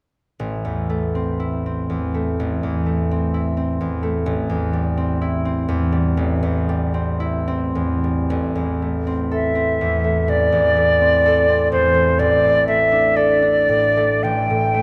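A concert harp opens at 0.4 seconds, fingerpicked and ringing up front as it lays down a slow, rubato accompaniment in A minor that spans its low and middle range. This is an impressionist classical duo for flute and harp, hazy and mysterious, moving at 61 BPM in 4/4 with uneven, elastic beats. The harmony rests on A throughout, shifting from A minor to C over A and, after a new passage begins at 8.3 seconds, back to A minor before settling on a suspended G chord over A. A silver concert flute enters at 9.3 seconds with a pure, tongued melody spanning C5 to G5, coloured by vibrato. A wet scoring-stage reverb with a long tail surrounds both instruments, deepening the misty atmosphere of this piece, which is cut from a longer work.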